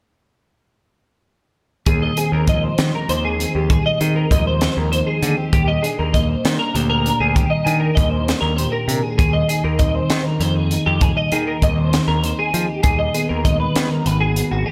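A 6/8 pulse at 66 BPM drives this playful, wistful math rock and midwest emo excerpt, where a bright, twangy twelve-string electric guitar picks chorus-shimmered arpeggios over a dark, fingered clean electric guitar with slapback echo, a growly overdriven picked bass, and a gritty, up-front fusion drum kit with a high-tuned snare and punchy kick, all entering at 1.9 seconds and moving through Fm7/Eb, Ebmaj7, Ab/Eb and B6/D# in a big, reverberant arena-like space.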